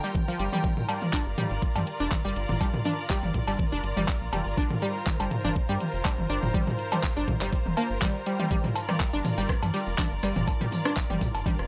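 Minimal techno at 122 BPM in G minor, clinical yet quirky, this short cut rides a lightly swung groove of a knocking, tape-warm kick, a garage kit with handclaps and metallic hats, and an overdriven electronic kit of cowbell, rim click and toms that sounds re-recorded in a small room. A juicy, squelchy blip pluck riff with chorus and tape echo bounces over a rubbery, hollow square bass, both pumping against the kick, while a lush, distant string section holds a smooth bowed texture on a G minor chord. A grainy egg shaker slips in at 8.5 seconds, and the whole mix carries a dry, gritty hardware sound with light reverb.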